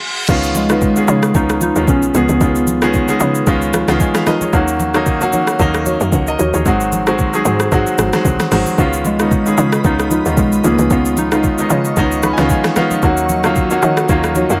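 A clear, polished baby grand piano sits up front in this late-night, hypnotic amapiano cut from a longer piece, moving at 113 BPM with a 16th-note swing over chords of Db9, Ebm7 and Ab7. Beneath it, a tight, punchy FM log drum bass with a noisy edge drives the low end, while an electronic R&B drum kit with a soft kick, fat snare, metallic hats, rim clicks, shaker and crash carries an overdriven grit and sits close to the listener. Damped, thick-skinned congas and a dark, detuned chord stab with chorus and delay fill out the background. A round, keys-like synth lead with tremolo, chorus and delay states its gentle, bright melody twice, first from 0.6 seconds and again from 9.1 seconds, when a glassy, ethereal FM pad also rises in with slow, warbling sustained chords. The piano adds a brief fill around 12.0 seconds, and the whole groove sits in light reverb.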